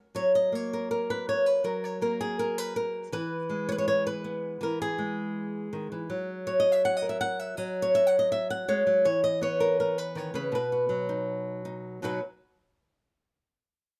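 A solo flamenco guitar opens the excerpt, bright and up front, fingerpicked at a brisk 162 BPM in B major with a fiery, proud character. Close, detailed miking with little reverb catches every finger squeak as the chords move between F#, E and B, the guitar playing until 12.2 seconds.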